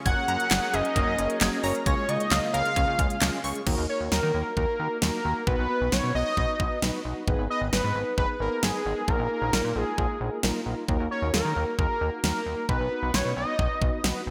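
A fat, saturated analog lead carries the melody up front from 0.1 seconds to 14.0 seconds, its detuned sawtooth tone thickened by a sub octave and shaded with vibrato and delay. This cut from a longer synth-pop piece feels driving and cool in a straight four, set in a bright 1980s-style digital production with a lush hall reverb. For the opening 3.6 seconds, a sweeping resonant pad holds sustained chords behind a chorused analog pluck tracing arpeggios with delay, both sitting in the background. A knocking kick, fat gated snare, crisp hats, handclaps and crash make up an up-front electronic pop kit, while a glossy, nasal chorused synth bass with a moving notch anchors the low end. A dark, round synth brass with vibrato fills in accompaniment as the harmony moves from Gbadd9 and Db6 into a cycle of Ebm, B, Abm and Bb7sus4 from 3.7 seconds.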